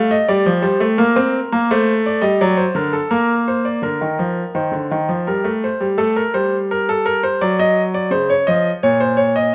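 A bright grand piano opens this contemplative yet driving baroque-style two-part invention, which is cut from a longer classical piece. It moves at 85 BPM in 3/4 with a straight feel, tuned to A4 = 441 Hz, and the solo piano ranges from Bb2 to Eb5. The sound is brilliant and polished, sitting up front with an intimate presence, long sustain and audible action noise. A moderate stone room reverb, with a 1.4-second decay, surrounds the instrument. The harmony passes through Bbsus2, D7 and Bbadd9 before a second section begins at 3.8 s on Bb/D. That section moves through Gmadd9 and D/F# to a colourful Dbmaj9, then settles on Bbm at 8.8 s.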